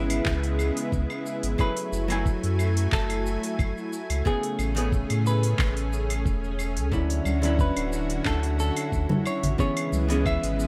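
A relaxed 90 BPM groove in 4/4 with a light swing on the sixteenths sets up this wistful sunset chillout passage in F# minor, cut from a longer piece. A gritty, thumpy electronic kick with overdrive arrives at 0.3 seconds beneath a smooth R&B kit of claves, handclaps, shaker and silky hi-hats that sounds tape-warm and re-recorded in a large room, and thick-skinned congas played with hard hands join at 7.3 seconds. Underneath, a deep, round sine sub bass sits up front with tube saturation. The harmony moves from C#m7 through F#m9, Amaj9 and Dmaj9 before returning to C#m7, carried by a dark, clean, picked archtop guitar and a lush, detuned sawtooth unison pad with slow attack, long release and chorus. On top, a clean, fingered semi-hollow electric guitar plays the melody through tape echo, while light reverb and a rough home-demo mix give the whole an unpolished, intimate feel.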